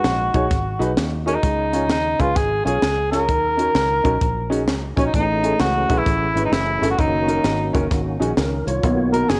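Uplifting and jubilant, this short cut from a longer uptempo gospel piece moves at 130 BPM in a swung 4/4 in F# major, with a dark, distant cor anglais carrying the melody up front with light vibrato and tape echo over a woody upright piano with audible action noise. A punchy, foam-muted fingered electric bass and a crisp fusion drum kit with a high-tuned snare and tight kick drive the groove, while a percussive tonewheel organ joins at 5.1 seconds with sustained chords through a fast rotary speaker and chorus vibrato. The home cassette recording gives the cor anglais, piano, drums and organ a tape-worn character, set in light reverb and studio ambience as the harmony moves from G#m7 through Amaj7 to Bmaj7.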